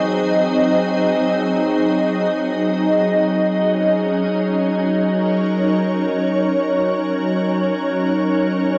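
A wet spring reverb and heavy echo surround this recording, which carries the grain of cassette tape. It is a spacious, serene ambient piece in free time, cut from a longer work. A single soft additive pad, organ-like and set up front, plays alone from start to finish, its pure triangle tone thickened by detuned unison voices and an ensemble chorus that gives it a warbling, vintage character. Each note has a slow attack and a long release, sustaining into its built-in reverb and dub echo, with a bright edge that keeps it clear inside the washy space. The harmony opens on Ab7, moves to Ebm7 at 3.1 seconds, and settles on Gb at 7.5 seconds.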